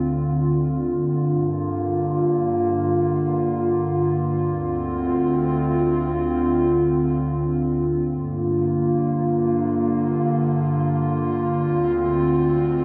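Melancholic and hazy, this hip hop excerpt drifts along on a single warbling, tape-like pad that carries the whole 12.8 seconds alone. The pad sits up front with a mellow, detuned, lo-fi character, its slow attack and long release letting each sustained chord blur into the next. Chorus, the pad's own built-in reverb and tape echo thicken its nostalgic glow, while a moderate spring reverb and digital ambience wrap the echo-heavy mix in a soft haze. The harmony rocks between Dm7 and Gm7, lingering on Gm7 before returning to Dm7, and a second passage beginning at 8.1 seconds repeats that same pairing. The result is a brief, dreamy fragment that feels lifted from a longer piece.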